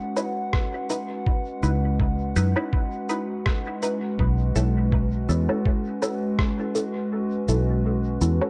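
A warbling, nostalgic pad in square and triangle tones opens this meditative ambient dub fragment, its detuned, slow-blooming chords moving from C#m9 to B9sus4 under chorus and built-in reverb, while a filtered dub chord stab with a sawtooth bite, phaser, cassette grit and dub echo sweeps through a filter across the whole passage. Muffled, pitched-down electronic cabasa, woodblock and rim click tick beneath it with their own dub echo, as a compressed, thumpy electronic kick sits up front until 6.5 seconds. A round, foam-muted fingered electric bass joins at 1.6 seconds, giving the dark, lightly reverberant mix its deep, swung floor.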